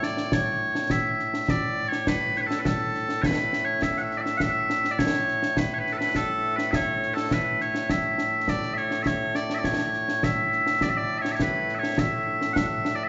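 Loud, piercing bagpipes carry a proud, stirring melody in straight 4/4 Scottish pipe music, sounding from the start alongside up-front concert snare drum and concert bass drum with dark cymbals, all set in a church or concert hall with a long, wet reverb that gives this short cut from a longer piece a grand, ringing presence.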